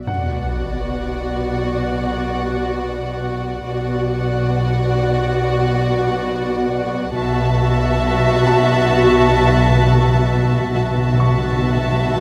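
A huge, bright sub drop and reverse cymbal open this tense, mysterious suspense film cue with an impact in its first few seconds, then return near 10.7 seconds. Bowed string sections hold a B minor chord: floating sul tasto violins carry the melody and a second line, woody viola adds lush vibrato, dark chamber cellos and pure double basses anchor the low end, and a clear, boxy grand piano sits very quietly on top as texture. Close, dry timpani struck with medium mallets mark the opening and play a fill from 7.2 seconds, all within a moderate scoring-stage reverb in this short cut from a longer piece.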